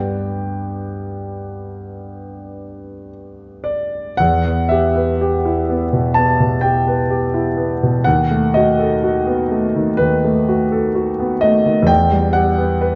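Dark, warm production in a moderate concert hall reverb frames this dreamy, serene fragment of a romantic classical nocturne, where a solo concert grand piano with a deep bass, smooth, vintage tone sits up front and drifts in rubato from its opening G chord into a new section at 4.2 seconds that passes through E minor and B7/D# before settling back on E minor at 11.9 seconds.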